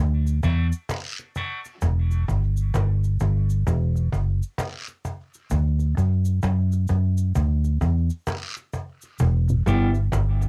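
A slow, swung 4/4 dub reggae groove opens this short, deep and spacious cut from a longer piece, with a dark, round and punchy foam-muted electric bass sitting up front from the first moment, moving between D and E minor. At 0.3 seconds a snappy cajon joins, played with hard hands and snares rattling in a small room, its sound softened by cassette tape. Alongside it, a compressed, saturated layer of cabasa and guiro, with a hint of maracas and group handclaps, slips in quietly through a high-pass filter and dub echo. A clean, twangy, scooped electric guitar plays a brief fingered figure near the start, colored by cassette tape and dub echo, then returns at 9.7 seconds. Just before that, at 9.5 seconds, a soft, flute-like tonewheel organ with chorus vibrato and slow rotary speaker flashes up front for an instant, shortly after the harmony has settled on E minor, all captured as a dry home cassette recording.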